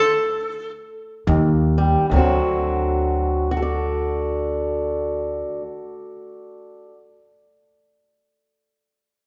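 A bright, nasal metal-body resonator slide guitar opens this soulful, laid-back snippet of acoustic country blues, its metallic fingerpicked slide line up front and heard alone before it drops out at 0.7 seconds. The tempo eases down through the opening, sitting around 70-78 BPM in a swung 4/4 in D mixolydian. At 1.3 seconds a fingerpicked swing-style acoustic guitar with fresh strings and a boxy, up-front tone comes in on an Eb chord, its finger squeaks audible, joined by a woody, growly pizzicato upright bass on steel strings. The harmony moves to D7 at 2.1 seconds as the guitar carries on and the dark bass keeps to its low register. A wet recital hall reverb lends the sound the spacious ring of a church or concert hall.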